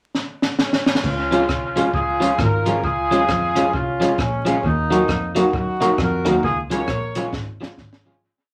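A swung ska beat at 134 BPM opens with a drum fill on a compact cocktail kit, whose dark, punchy sound and side-stick backbeat carry a dub echo, before this short, bouncy, upbeat piece in Db major settles in at 1.0 seconds. A bowed double bass walks with vibrato and portamento, a slightly broken-up electric guitar plays compressed off-beat chops with dub echo, and a jangly, boxy tack piano adds off-beat stabs in the background, while a distant, roomy horn section states hook phrases partly doubled in thirds. A small, wet room and vinyl crackle colour the recording, which fades out from 6.4 seconds as a second drum fill arrives at 7.3 seconds.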